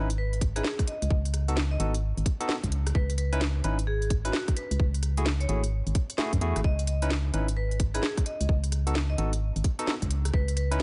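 A swung two-step garage groove at 130 BPM, built on a tight, up-front electronic kick and a tape-warm kit of cracking snare, rim click and crisp hats, carries this soulful, late-night UK garage excerpt, where a hollow, dark, organ-like FM bass anchors chords moving from C#m9 through B7 and F#m9, a barky, lightly overdriven tine electric piano plays stabs through tape echo, and a metallic, ringing vibraphone with motor off carries the melody, all in a dry mix with little reverb.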